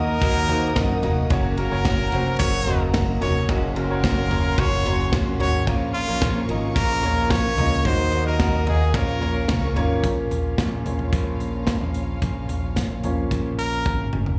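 Piano-driven pop in Bb minor at 110 BPM, driving and dramatic, heard live through a club PA, where a brilliant trumpet with vibrato and scooped notes carries the melody over a clear, woody upright piano, a growly fingered electric bass, punchy studio drums, a full-bodied fingerpicked steel-string guitar riff and soft, bowed strings in the background, until the trumpet drops out and the piano takes a solo from 10.0 seconds, closed by a drum fill at 13.9 seconds.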